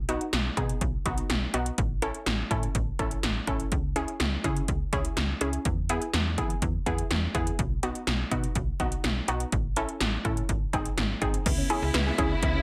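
Driving and nocturnal, this synth-pop excerpt in C# minor runs at 124 BPM with punchy, overdriven 80s electronic pad drums up front (gated snare, metallic hats), a snappy slap-like FM bass, and a nasal, detuned unison pluck moving through B, A, C#m, E and G# before a dark, bowed string section and a soft, chorused pluck with digital delay arrive at 11.5 seconds on a closing C#m7.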